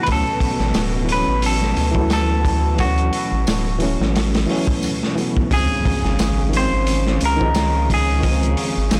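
A blown-out, overdriven recording in a small room gives this hypnotic, melancholic trip hop excerpt a heavy, saturated haze. It moves at 88 BPM in 4/4 with a 16th-note swing. A crunchy breakbeat kit sits up front, with a tight kick, a medium-tuned snare and hi-hat, all gritty and rolled off at the top. A round analog bass carries deep, mellow, evolving tones beneath it. A bright semi-hollow electric guitar plays the clean, picked, compressed melody, roughened by vintage 12-bit sampler grit and tape echo. A reedy electric piano with tremolo and tape echo accompanies it. A distant symphonic string section holds bowed chords with light vibrato. A close, dry tambourine enters at 0.7 seconds in the background. The harmony moves from Dmaj7 to C#maj7 at 5.5 seconds, where a very quiet electronic impact sounds until 8.2 seconds.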